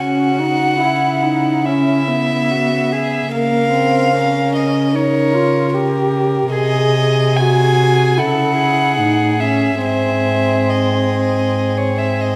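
In a rubato 4/4 hovering between 68 and 77 BPM, this slow romantic movement for string quartet unfolds in C# minor with a melancholic, solemn cast, tuned to A4 = 441 Hz. All four players bow sul tasto throughout the 12.4 seconds. The first violin carries the melody between C#5 and G#5, up front and intimate, its tone rich with light vibrato and an airy bow. Beneath it, a dark-toned second violin traces a soft-attacked second line, while the viola fills in accompaniment with a nasal, woody voice, a smooth top and vibrato. The cello anchors the bass, close and up front, with a pure, floating sound. Harmonies move from C#m through D#7/C# and G#7/B# before returning to C#m and coming to rest on G# at 9.8 seconds, all set in a wet recital hall reverb in this passage cut from a longer piece.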